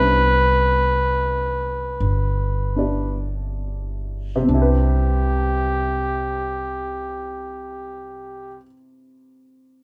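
A breathy, mellow trumpet, an upright piano and a pizzicato upright bass begin together on a Cmaj9 chord, opening this intimate, late-night jazz ballad excerpt in C major and free time. The solo trumpet sits up front with scooped notes and a smooth top, phrasing the melody in a narrow range in jazz style. The bass, also up front, has a woody, thumpy gut-string sound. The piano adds present, short-sustained accompaniment. The music slows through its first 4.5 seconds before moving into a new section, heard as a small band playing live in one room with moderate studio reverb. Trumpet and bass stop at 8.6 seconds, and the piano carries on alone until 9.8 seconds.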